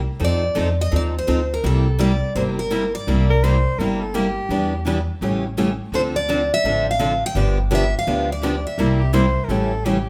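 The picked, plugged-in dreadnought steel-string guitar leads this swinging, playful excerpt of acoustic string swing in the jazz manouche style. Its bright melody sits up front in two phrases, from 0.2 to 3.4 seconds and again from 6.0 seconds. It rides a brisk 168 BPM in 4/4 with a lilting swing on the eighths in C mixolydian. A breathy soprano saxophone with clear jazz vibrato adds a short second line at 3.3 seconds, between those phrases, and again at 9.0 seconds as the second phrase winds down. Underneath, two more picked steel-string guitars keep up the accompaniment throughout: one a boxy parlour guitar up front, the other a concert guitar set back with audible finger squeak. A woody, thumpy pizzicato upright bass on gut strings sits up front, moving through changes such as F7, C7, Em7, A7, Dm7 and G7, while the band plays live together in one room bathed in a moderate large-studio reverb.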